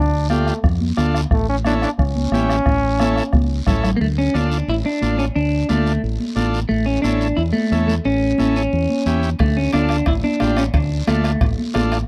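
A driving straight 4/4 cumbia at 178 BPM in D harmonic minor opens with a punchy, bright trombone solo up front over round, dark fingered electric bass, buzzy overdriven combo organ, a soft-beater bombo, high-tuned background congas and a raspy guiro, moving between Dm and A7. After a drum fill, at 4.0 seconds a twangy, picked clean electric guitar with spring reverb takes the melody, and ringing metal-shell timbales join the returning bombo at 9.4 seconds. The passionate cut has a dry, close 1970s-style studio sound.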